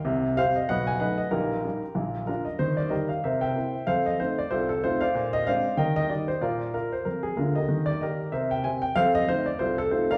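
A wet recital-hall reverb surrounds a woody, intimate upright piano that sits up front, its mechanical action noise clearly audible. This playful, exuberant stride jazz swings in 4/4 as the solo piano ranges from deep bass to bright treble over chords such as C7, F7 and Bb9. The piece shifts into a new section at 2.6 seconds, and this short excerpt is cut from a longer performance.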